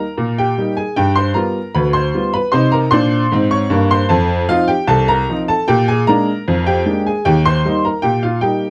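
A woody, slightly detuned upright piano plays alone and sits up front, its long sustain ringing across a range from C2 to Db6 for the full 8.7 seconds of this short cut from a longer piece. The ragtime is cheerful and playful, moving at a relaxed 76 BPM in straight 2/4 and Eb major, with a progression running from Eb through G7, Cm, F7 and Bb7 before returning home to Eb. Light reverb and a dark production with vinyl crackle give the recording a worn, old-record character.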